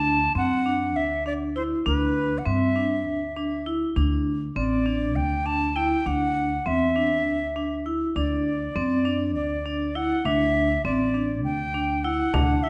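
A breathy, straight-toned concert flute carries the tongued, slightly unsteady melody up front while a metallic, ringing vibraphone with hard mallets and motor vibrato spins arpeggios and a woody pizzicato upright bass anchors this shimmering, playful contemporary chamber piece in 7/8 at 200 BPM in D mixolydian, with a small, compressed frame drum and a delicate, bell-like celesta slipping in at 12.3 seconds, all set in a reverberant recital hall.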